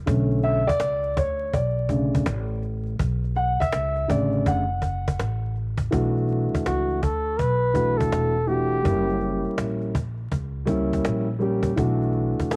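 Cassette tape, vinyl crackle and a small-room ambience frame this nocturnal, mellow jazz-hop excerpt in B minor at 82 BPM, swung on the sixteenths and tuned slightly flat to A4 = 435 Hz. A dark, boxy baby grand piano with long sustain takes a solo through the first 5.9 seconds, over a woody, growly pizzicato upright bass and a snappy, close and dry cajon struck with hard hands, moving from Bm9 to F#7b9 at 8.8 seconds. At 6.7 seconds a bucket-muted trumpet enters with a veiled, breathy jazz line of light vibrato and soft attack.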